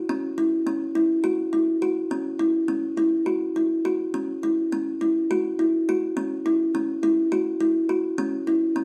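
A contemporary instrumental excerpt in 7/8, counted in eighths at 208 BPM with a straight feel, tuned slightly low to A4 = 438 Hz, carrying a pensive yet urgent mood. A lone kalimba plays throughout the 8.8 seconds, its woody, thumbnail-plucked notes short and bright within a narrow span from C#4 to F#4, sitting up front with a mid-forward solid-board tone. Moderate studio reverb places it a little back in the room, and lossy compression artefacts colour the sound.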